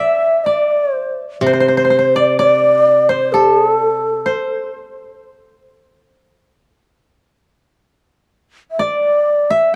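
A breathy, mellow bamboo shakuhachi carries the melody up front over a dry, woody koto second line from the start of this austere, calm excerpt of Japanese chamber music in an unhurried rubato 2/4, its vibrato and tongued notes falling away at 4.7 seconds and returning at 8.7 seconds, while a bright fingerpicked koto adds a low accompaniment from 1.4 to 4.2 seconds, all set in a dark production with a moderate plate reverb.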